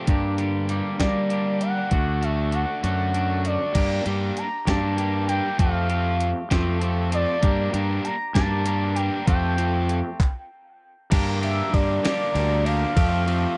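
Indie rock in a lilting 6/8, this short excerpt carries a bittersweet, moody air over a slow, swaying pulse. An overdriven, compressed electric guitar bathed in lush chorus and a clean, twangy fingered guitar both play riffs from the first moment, while a round, punchy fuzz bass sits up front with a thick, driven tone. A 12-bit drum machine supplies thumpy kick, fat snare, hi-hat, ride, crash and handclaps with a tape-softened, small-room character. From 1.0 seconds a smooth sawtooth-and-triangle lead glides in with portamento and vibrato, its soft attack and sustained, mellow notes wrapped in chorus, plate reverb and analog delay. The kick and snare drop out briefly around 2.8 seconds and stop again near 10.2 seconds before the harmony settles into its final stretch, cycling between G minor and Fadd9 chords.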